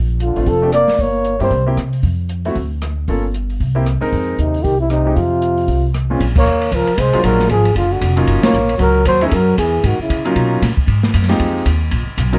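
Small-group swing and bop jazz at a brisk 231 BPM with a late-night, smoky mood, cut from a longer piece: a whispered, dark flugelhorn with vibrato and plate reverb carries the melody over a breathy trombone second line, both scooping into notes, while a woody, thumpy upright bass, a clear grand piano with audible action noise and a small-room drum kit with dark cymbals and a boomy kick play underneath, the tune moving into Bb minor at 6.2 s and the band hitting accents at 6.3 and 8.4 s.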